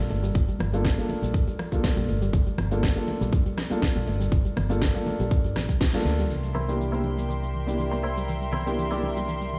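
A dark, boxy baby grand piano with sidechain pumping and tape echo opens this sensual, cosmic nu-disco excerpt in G dorian at 121 BPM, alongside a bright, punchy envelope-filtered fingered bass with tube saturation, a house kit with a cracking snare and metallic hats, a soft, round background pluck playing chorused arpeggios, a punchy up-front electronic kick, and soft-handed congas and cabasa tucked behind. After a band accent the kick drops out at 5.9 seconds, and the Gm9 harmony moves to C7 as a dark, sul tasto string section enters at 6.3 seconds with smooth, pumping sustained chords, followed at 6.5 seconds by a twangy, clean, direct-recorded electric guitar riff coloured by lush chorus and 12-bit sampler grit, all set in a large studio reverb.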